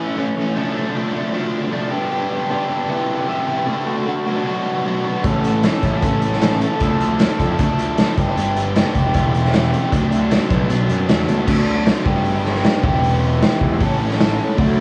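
Carefree and upbeat, this indie rock excerpt runs at 154 BPM in A mixolydian, opening with a biting, bright, double-tracked overdriven guitar riff up front with analog delay, playing alone until 5.2 seconds. At that point a growly fuzz bass and a raw garage drum kit arrive together, the kit gritty and saturated with a punchy kick, medium-tuned snare, pumping small-room sound, rolled-off top and its own analog delay. The echo-heavy mix carries spring reverb and a cassette tape character, and it shifts at 11.5 seconds into a short closing section that lands back on A.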